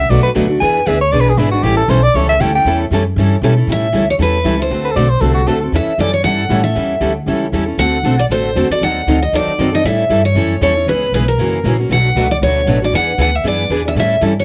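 A clear soprano saxophone with vibrato and a subtone opens this lively, charming stretch of acoustic string swing, soloing in a jazz style over the first few seconds before briefly returning at 4.8 seconds as a second line. At 3.7 seconds a picked steel-string acoustic guitar takes over the melody with a bright, fresh-stringed, concert-style sound. Beneath them, two more picked guitars play the accompaniment: one a bright, full-bodied jumbo sitting up front, the other a bright concert instrument with fresh strings and an audible finger squeak. A woody, thumpy upright bass with gut strings is played pizzicato and anchors the quick 233 BPM swing in A mixolydian, moving through a turnaround-rich progression that passes through D7, a diminished chord and back to Bm7 and E7. The saxophone and guitars carry a cassette tape character, and a light reverb gives the whole piece an intimate home-recorded feel, cut from a longer performance.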